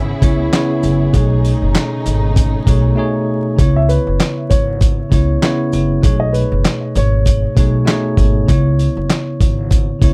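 A gritty, sampler-style soul drum kit with a thumpy kick and fat snare sits up front in this dark boom-bap hip-hop excerpt, its handclaps, hi-hat and shaker swinging over a woody pizzicato upright bass and clean, bell-like tine electric piano chords. A lush bowed string section holds sustained chords until 3.6 seconds, just after a short break, and then a mellow, intimate upright piano carries the melody through a digital delay until 8.5 seconds, while faint jingly sleigh bells ride in the background. The dry, warm mix is coated in vinyl crackle.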